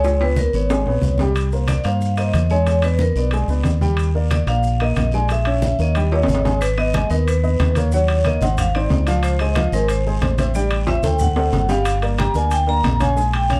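A sunny, danceable stretch of Afro-Cuban jazz at 183 BPM in 4/4, cut from a longer piece, where a metallic, ringing vibraphone with medium hard mallets and medium motor vibrato carries the melody over an intimate baby grand piano whose action noise can be heard, while a round, dark fingered electric bass sits up front. Low-tuned, compressed congas, vintage metal-shell timbales, a raspy guiro and grainy, distant maracas fill out the percussion, with drum fills at 0.0, 6.1 and 10.9 seconds. The production is dark and lightly reverberant, and the chords move quickly from Cm7 and E7 through Ebmaj9 and Dbmaj9 before settling on Gm.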